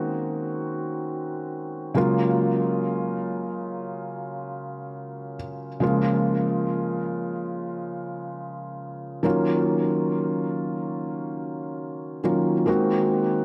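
A felt-muted upright piano plays alone, intimate and dark with thick felt and audible action noise up front, drifting in free time through late-night, moody R&B chords in Eb dorian (Ab9, Gbmaj9, Db6 and Ebm9) with tape echo and a 3.5-second plate reverb that soaks this dreamy 13.4-second fragment of a longer piece.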